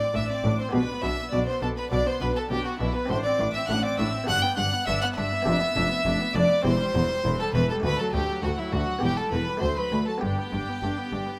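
A close, reedy solo violin stands up front in this brilliant, lively baroque-style concerto movement in G major at 101 BPM, sharing the melody with a violin section with a smooth gut-string top, joined by a second violin line in the background, warm viola accompaniment, a very quiet, muted, lute-like buff-stop harpsichord, and a nasal cello section and rich double bass section on the bass, all tuned to A4 = 438 Hz in light reverb.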